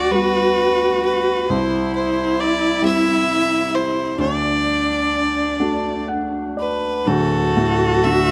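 A clear fiddle carries the melody up front, its nasal, earthy tone smoothed at the top and shaded with light vibrato from a single bowed player. This is a nostalgic, wistful Celtic slow air in 6/8, played rubato and cut from a longer piece. Beneath it, a dark cello bowed close by one player sings a second line, expressive with vibrato and portamento. A felt-muted upright piano gives soft, mellow, intimate accompaniment across a broad range, adding a fill between 5.6 and 7.1 seconds before a new section begins at 7.1 seconds. The harmony moves from Gmaj7 over D to C and then to D, all three instruments sounding throughout and held in a moderate recital hall reverb.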